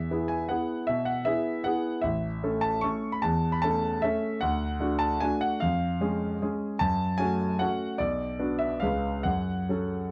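A classical piano waltz in F# minor, this short excerpt of about 10 seconds is cut from a longer piece and carries a nostalgic, bittersweet mood. A solo grand piano plays throughout, its tone clear and present, sitting up front, spanning a range from A1 to C#6. The tempo moves between 132 and 160 BPM in 3/4 with a rubato feel, so the waltz pulse bends and breathes. The harmony travels from E through A and D to C#/E#, settling on F#m at 6.8 seconds before passing through Bm and C#7 and closing back on F#m at 9.3 seconds. Light reverb and a dark production give the recording a gentle, intimate sense of space.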